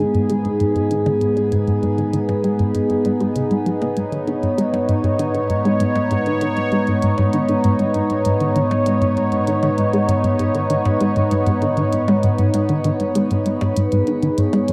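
A straight 4/4 pulse at 98 BPM drives this cosmic, hypnotic stretch of sequencer-driven space music in G# minor, tuned to A4 = 439 Hz. A punchy, funky analog bass riff with a fast, decaying pluck runs throughout, shaped by a filter sweep and colored by subtle chorus and tape echo. Beneath it, an analog drone holds G#2 in the background, evolving through pulse-width modulation. Up front, a bright, detuned pad sustains a G# minor chord, its resonant filter swell bathed in chorus and shimmer reverb. Clicky electronic hi-hats and percussion blips enter at 0.1 seconds and fade in, trailing tape echo. At 13.8 seconds a round, horn-like synth lead enters with vibrato, phaser and chorus, just before this excerpt from a longer piece ends, the echo-heavy mix set in a wet plate reverb.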